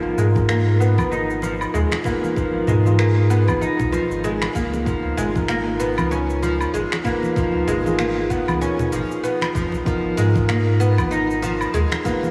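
A lush hall reverb gives this fragment of organic downtempo a big arena sound with a touch of small-room ambience, setting a mystical, earthy mood over a swung sixteenth-note feel that rests on a single chord. Up front, a woody, fretless oud plucked with a plectrum plays arpeggios through a low-pass filter, tape echo, slapback and shimmer reverb. Beside it, a clean tine electric piano heard through its built-in speakers carries the same echoes plus sidechain pumping, and a round sine sub bass also pumps. Beneath them, a deep, tape-warmed electronic kick and electronic cabasa, finger snaps and woodblock sit with close, dry congas played with hard hands in the background.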